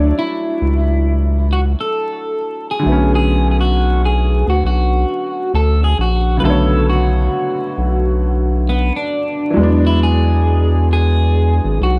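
From the first moment, a slightly broken-up electric guitar carries the melody over a clear, woody upright piano and a deep, round analog bass in this reflective, nostalgic lo-fi hip hop piece, cut from a longer work. The tempo sits at a relaxed 67 BPM in 4/4 with a swung sixteenth-note feel, and the music moves in B dorian. The guitar sounds fingered and compressed, sits up front and is colored by a phaser. The piano has a worn, faintly detuned character in the accompaniment, while the dark, sustained bass is the loudest part and stands forward in the mix. Small room ambience and vinyl crackle surround the parts as the harmony moves from Dmaj9 to Bm7 at 2.9 seconds and on to E7 at 9.6 seconds.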